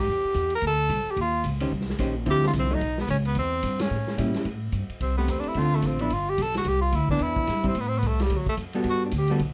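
A bright tenor saxophone leads this moody small-group swing and bop jazz clip, sitting up front with a soft attack and jazz-style vibrato before moving into a solo at 4.5 s, where the harmony settles into A minor. Beneath it, a woody pizzicato upright bass on steel strings sits close and carries the low end at a brisk 219 BPM in a swung 4/4. A hollow-body jazz guitar joins at 1.6 s with clean, dark, fingered chords that move through rich extended harmonies such as Dm9, A7 and Cmaj9. The swinging drum kit sounds distant and roomy, with a punchy kick, a medium-tuned snare, hi-hat and ride cymbal, and a rolled-off top. A band accent lands at 3.8 s, and light reverb gives the cut-from-a-longer-piece excerpt a gentle sense of space.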